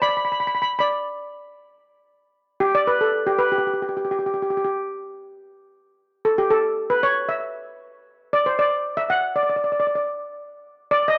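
A lone steel pan opens this bouncy, carefree calypso excerpt in G major at 116 BPM, its metallic, shimmering, band-limited lead voice struck with hard rubber sticks and sitting up front with a slapback echo in a dry, close 1970s-style studio sound, playing between G4 and B5 and stepping into a solo at 2.1 seconds that carries through to 11.2 seconds.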